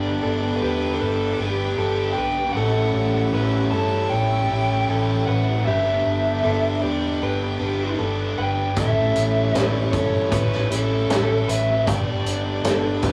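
A straight 4/4 pulse at 77 BPM carries this wistful, hazy rock excerpt in A mixolydian, steeped in shoegaze and dream pop, as overdriven lead guitar sings a biting melody with slapback echo over two riffing guitars, one overdriven and one slightly broken-up and lo-fi through a small old amp, while a bright, scooped direct-recorded clean guitar picks arpeggios and a dark, foam-muted fingered bass holds the low end. A shimmering string machine of violins with ensemble chorus and a soft attack sustains chords in the background as the harmony moves between G and A7. A loose, gritty indie drum kit with a punchy kick enters up front at 8.8 seconds, and the whole take sits in the wet ambience of a rough rehearsal-room recording.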